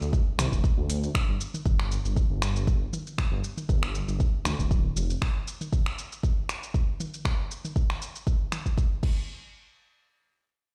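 A dark, detuned sawtooth bass drops in at the start with deep, rumbling, saturated weight and sidechain pumping, alongside an afro-pop drum kit of crash cymbal, finger snaps, metallic hats, shaker and toms in studio reverb. This driving, spiritual afro house track moves at 118 BPM in 4/4 with a light swing on the 16ths. A deep, up-front electronic kick enters almost immediately and carries the groove on after the bass stops at 5.1 seconds, and the whole piece sounds as if played on a big sound system in a bare stone room.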